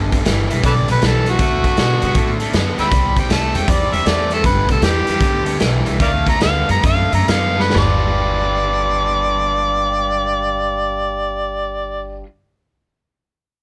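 Electric blues shuffle in G mixolydian, laid-back and swaggering at 126-158 BPM with a swung feel, where an amplified, gritty harmonica with vibrato, scooped notes and tongue slaps takes a jazz-style solo up front over a bright, overdriven picked guitar riff, a woody, growly pizzicato upright bass and a punchy, saturated drum kit in a stone room, as the groove slows from 4.4 seconds, the drums play a fill at 7.5 seconds and stop at 7.9 seconds, all in a dry mix cut from a longer piece.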